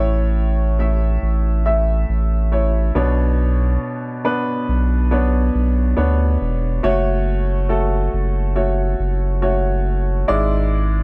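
A clear, woody upright piano and a deep, saturated sub bass open together at a slow 69 BPM, both up front in this hopeful, tender pop ballad fragment. The piano carries the accompaniment through a gentle progression from A to Bmadd9 and F#m, settling on E7/G# near 10.3 seconds, while the thick, sustained bass with its fast attack anchors the low end. The studio ambience gives the whole passage a dark, warm production feel across its 11 seconds.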